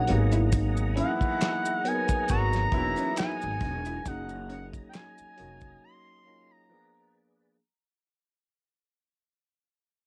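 A slow, lightly swung 16th-note groove at 68 BPM in 4/4 sets a late-night, introspective neo-soul and R&B mood, driven by a dry, damped 70s drum kit with a fat snare, tight kick, hi-hat and handclaps, plus close, dry maracas and finger snaps. An upright bass sits up front with a woody, thumpy gut-string pizzicato tone, while a clean tine electric piano and a lightly overdriven tonewheel organ, with key click, chorus vibrato and slow rotary speaker, fill in the harmony behind. Over them a smooth sawtooth portamento lead carries the melody with chorus and vibrato, and a slightly broken-up, picked electric guitar through a small old amp adds a compressed, lo-fi second line in the background. A tight horn section with light vibrato punctuates with pop-style stabs between 1.0 and 3.4 seconds, as the harmony moves from Emaj9#11/G# to Gb69 and finally Bb7b9. The whole cut fades out, and after the guitar, bass and drums drop away by 5.8 seconds the lead, keys and organ linger into a brief break, all framed by light reverb and the soft hiss of a home cassette recording.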